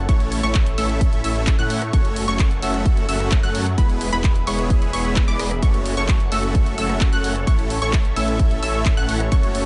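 Festival progressive house at 130 BPM with a powerful, anthemic mood, this short excerpt sets a punchy, up-front electronic kick and a layered house kit of handclaps, hi-hat and rim click under a huge, compressed supersaw riff with vibrato and digital delay, bright detuned pluck arpeggios, a saturated detuned saw bass and a slow-attack pad glimmering with chorus and phaser in the background, the synths all pumping to the sidechain through an A, F#m, E, F#m, A progression in a dry, dark-topped mix.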